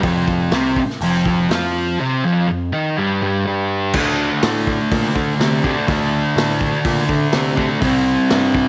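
A thick, dark fuzz guitar sits up front, double-tracked and picked, driving a riff built on power chords that moves from F5 to D5 at 4.0 seconds and on to C5 at 7.8 seconds. This raw, gritty garage rock excerpt runs at 123 BPM in a straight 4/4 and is cut from a longer piece. Underneath, a growling picked electric bass with a bright, overdriven tone, recorded both direct and through an amp, holds the low end. A vintage acoustic drum kit plays throughout with a punchy kick, a medium-tuned snare, hi-hat, crash and dark cymbals, its sound mid-forward with a rolled-off top in a studio room. Light studio reverb and a faint mains hum add to the raw, gritty character.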